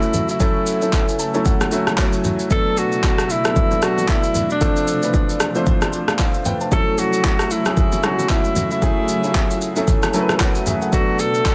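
Amapiano with a hypnotic, late-night mood and a swung 16th-note feel, cut from a longer piece. A deep, tape-warm house drum kit of kick, handclaps, rim click and shaker sits up front beside an open baby grand piano with long sustain that adds fills at 0.9 and 9.9 seconds, while a glassy, warbling vintage FM pad with chorus and sidechain pumping hovers in the background over chords moving from F#m7 through Bm7 and Dm7. A distant, roomy alto saxophone with vibrato and delay carries the solo melody, and very quiet, bright congas and bongos played with soft hands enter at 0.1 seconds under a dense, heavily limited modern master.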